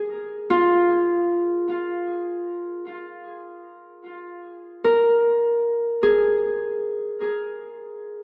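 A lone Celtic harp carries this short, reflective ambient fragment, its acoustic, fingerpicked strings ringing up front within a range from E#4 to A#4. Cut from a longer piece, it unfolds in free time across 8.2 seconds, with the harmony resting on an A#5 chord from the outset. A diffuse ambient delay trails the harp's notes, blending into a wet concert hall reverb with a 2.1-second decay that lends the moment a serene, spacious calm. The sound carries the character of worn, old cassette tape, with a warbling pitch drift that gives the tone a faded, wavering quality.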